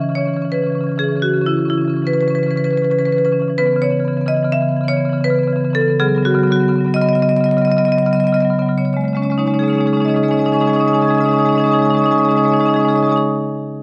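In a rubato 5/4 that moves between 96 and 130 BPM, this flowing, reflective contemporary classical piece for solo marimba in C# minor, tuned to A4 = 444 Hz, gradually slows from 3.6 to 8.8 seconds before shifting to a new passage. The marimba, struck with medium hard mallets, spans C#3 to G#6 with a warm, mid-forward tone, and its harmony moves from C#m7 to C#9sus4 and then settles on C#sus2. Close, detailed microphones place it up front in light reverb, and the recording is cut from a longer piece.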